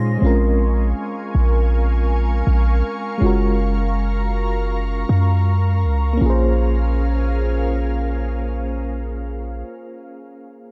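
A dark, warm digital ambience frames this short, moody slice of contemporary R&B in Bb minor, drifting at 80 BPM in a straight 4/4 with a longing feel as the chords move from Bbm7 to Gbmaj7 and back. A deep, boomy 808-style bass sits up front beneath a mellow, warbling FM electric piano treated with chorus and tremolo, while an airy, detuned pad holds sustained chords through ensemble chorus and its own reverb. A pure synth bell with chorus, phaser and tape echo rings briefly in the background at the start, and the piano carries on alone after the bass and pad stop at 9.6 seconds.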